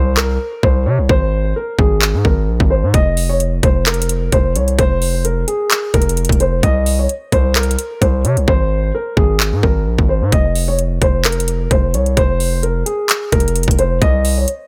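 A melancholic, hard-hitting trap cut taken from a longer piece, moving at 130 BPM in 4/4 with a half-time feel in F minor, and sitting slightly flat of standard pitch. A dark, boxy concert grand piano carries the melody between Ab4 and Eb5, its tone dulled by a low-pass filter and trailed by a digital delay. Beneath it, a distorted 808-style bass growls from F1 to C3, its saturated sine body layered with noise, striking with a fast attack before decaying. The electronic trap kit of hard-clipped kick, handclaps and metallic hi-hats enters at 0.2 seconds, during an opening break that runs to 2.9 seconds, and the hats drop out from 8.5 to 10.3 seconds. The harmony cycles through C7 with the third omitted, Ab and F5 before settling on Cm near the close, all in a dry, close mix with piano, bass and drums placed up front.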